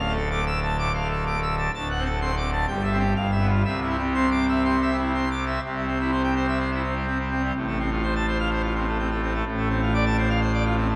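Classical organ toccata, stormy and majestic, heard as a brief passage cut from a longer piece. A single pipe organ plays alone throughout on full organ, its mixtures giving a brilliant, romantic voicing that sits up front and stretches from deep pedal notes to a high treble. The harmony opens on D minor, passes through a dominant seventh to settle on C by about 3.6 seconds, then moves to F over A near 7.5 seconds and a D minor seventh over A at 9.5 seconds. The passage falls into two statements of the same section, the second beginning around 5.6 seconds, in a steady, straight four-beat metre. A wet church acoustic with a long decay surrounds the instrument, giving it a grand, cavernous presence.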